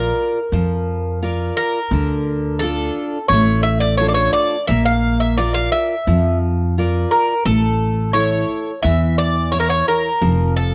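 Bright, metallic Greek bouzouki with octave-doubled strings carries the melody over a full-bodied picked steel-string acoustic guitar and a woody, growly pizzicato upright bass from the first second in this cool, brooding Greek folk band excerpt at a straight 87 BPM in 4/4, moving through Bb, Dm, Bb and A before landing on F at 10.2 seconds, with cassette-tape grit on the bouzouki and guitar and a moderate spring reverb in a small room lending the close, up-front home recording an intimate feel.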